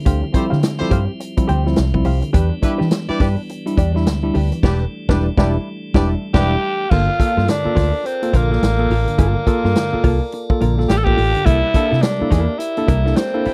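A growling, raspy tenor saxophone takes the melody up front from 6.3 seconds in this sly, swung funk excerpt at 105 BPM, following a distant horn section's second line over a swinging big-band drum kit with a punchy kick, a round foam-muted fingered bass, a dark hollow-body jazz guitar, worn electric piano stabs with slapback echo and piping tonewheel organ chords with key click, all captured in a dry, close 1970s-style studio sound.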